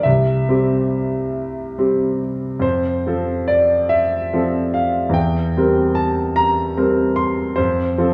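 In a 6/8 with a free, rubato feel, this romantic nocturne for solo piano drifts along at around 46-50 beats per minute, counted in dotted quarters. The mood is tender and dreamy, set in F major, and the brief passage is cut from a longer piece. A clear concert grand piano carries everything alone from 0.0 to 8.1 seconds, ranging from C2 up to C6, with a deep bass, a smooth, vintage character and an up-front placement. The harmony moves gently from C to F, then to C7/E at 5.2 seconds before settling on F at 7.6 seconds. A wet recital hall reverb surrounds the piano, while a worn, warbling old cassette tape quality adds a drifting pitch that lends the sound a nostalgic haze.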